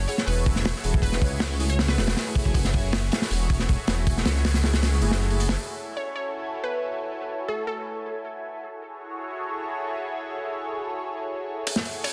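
Drum and bass with a jungle edge at 158 BPM in F# minor, this raw, atmospheric excerpt opens on a drop where a crunchy, saturated breakbeat kit and a rumbling detuned saw bass sit up front beneath soft, wave-folded chord stabs in the background, while a lush unison pad with phaser and 12-bit sampler grit sustains throughout and a glassy wavetable pluck carries the melody in short phrases with dub echo; the kick drops out at 4.8 seconds, drums, bass and stabs stop at 5.6 seconds, leaving pad and pluck to float in light small-room reverb, and the drums briefly return at 11.7 seconds.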